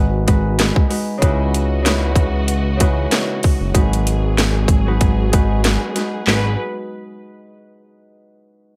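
A light reverb gives this short moody, dark boom-bap hip-hop fragment some air, with the harp, bass and drums all placed up front. A fingerpicked acoustic Celtic harp rings out the accompaniment from the start over a smooth synth bass that blends sawtooth, square and triangle tones with ring modulation, fast attack and sustained notes. A tight, layered electronic drum kit with a cracking snare, metallic hats and handclaps carries a tape-warm character and the sound of a large room, its 16ths lightly swung. From 1.2 seconds a bright, lush string section adds bowed, vibrato-rich sustained chords beneath the harmony moving from G#m7 to C#m11 and back to G#m7. At 6.3 seconds a distant, biting violin section touches a single melodic note with tape echo as the fragment cuts off.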